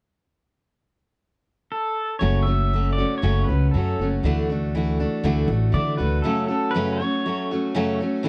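A straight 4/4 pulse at 119 BPM drives this rock piece, cut from a longer work, with a jangly, open-road mood. The pedal steel guitar carries the melody from 1.7 seconds, sitting between A4 and E5. Its clean, twangy electric tone is shaped by fingerpicks, slide, volume swells and compression. From 2.2 seconds a picked dreadnought acoustic guitar adds dark, full-bodied accompaniment, while a woody pizzicato upright bass strung with steel anchors the low end until 6.2 seconds, as the harmony moves from F#m to Dadd9 and back to F#m. All three parts sit up front in a dry, close 1970s-style studio sound with light reverb.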